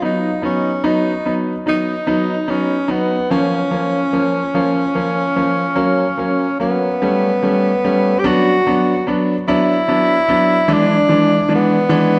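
A breathy tenor saxophone carries the melody in this tender, swaying pop piece, its mellow, whispered tone shaped by vibrato, soft attacks and scooped notes in an intimate, jazz-style solo voice placed up front. A clear baby grand piano accompanies it throughout, sounding natural and close, with its action noise audible beneath the chords. The music moves slowly at 49 beats per minute in a lilting 6/8, drifting through shifting harmonies before settling into D major at 8.3 seconds for a new section. A concert hall reverb wraps both instruments in a long, wet tail, and the overall production leans dark. This short passage is cut from a longer piece.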